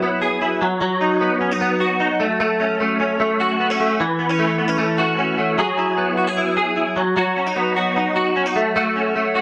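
A bright, twangy clean electric guitar sits up front in a moderate club-sized reverb, recorded direct and compressed, with an ensemble chorus shimmering over its picked notes. Alone for the full 9.4 seconds, this nostalgic, breezy indie pop fragment cycles through Eadd9, B, F#m and A6 before a second section at 5.6 s returns to the Eadd9, B and F#m changes.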